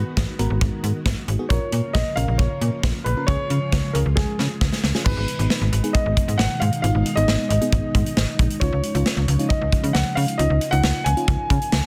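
Nostalgic yet upbeat, this short synth-pop excerpt moves at 135 BPM in a straight 4/4, cut from a longer piece and moving through chords from G#m7 and A#m to C# and later C#add9. A dark, mellow baby grand piano carries the melody with long sustain and a touch of delay. Beneath it, a soft, round FM electric piano plays accompaniment colored by chorus and phaser, while a lush, vintage string machine holds full-bodied sustained chords in the background with its own ensemble chorus. Up front, a snappy FM bass with a metallic, slap-like attack drives the low end, joined at 0.2 seconds by a tight, natural-sounding studio drum kit with bright cymbals and a medium-tuned snare, which plays a fill from 4.2 to 5.1 seconds leading into the second section. The small room adds a moderate, short reverb, and the dense, heavily limited master keeps the sound full and modern.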